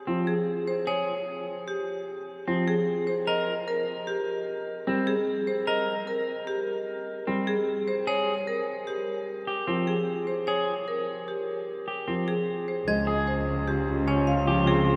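Meditative and hypnotic, this minimalist classical pattern music moves at 150 BPM in a straight 6/4, cut from a longer piece and bathed in a wet cathedral reverb with a long tail. A bright, percussive marimba struck with hard mallets carries the melody up front, while a twangy, slightly broken-up electric guitar plays fingered arpeggios, also up front. Beneath them, a smooth, vintage-toned grand piano holds the low accompaniment as the harmony turns from F minor through G minor and a rootless B-flat seventh chord. At 12.9 seconds the music shifts to a D-flat major seventh, where a clear, bowed cello with light vibrato enters up front on a low D-flat, a dark, distant clarinet adds a second line in the background, and a metallic, bell-like glockenspiel rings out briefly from a boxy small room. The passage ends at 15.0 seconds with the cello and clarinet still sounding.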